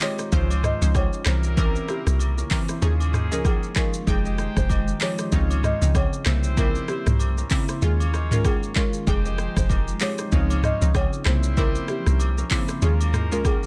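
Sultry and mellow, this afrobeats groove moves at 96 BPM in 4/4 with a lightly swung sixteenth-note feel, cycling through lush chords that circle from Dbmaj9 through C7b9 and Eb9sus4 to Fm9. Up front, an electronic afro-pop kit with a deep kick, crisp hats, handclaps, rim clicks, shaker and toms carries a gritty vintage 12-bit sampler texture. A deep log drum bass joins at 0.3 s, round, dark and percussive with a fast, decaying attack, alongside a clear, tight horn section in octave doubling with light vibrato. The melody comes from a dry, woody buzzing marimba played with medium mallets and colored by tape echo, while a detuned, warbling analog pluck with chorus fills in the accompaniment and a fingerpicked, ringing kora riff with its own tape echo sits in the background. Underneath, a very quiet granular cloud pad holds blurred, evolving sustained chords, and distant agogo bells and woodblock add percussion heard in a large room, all set in a digital ambience in this short cut from a longer piece.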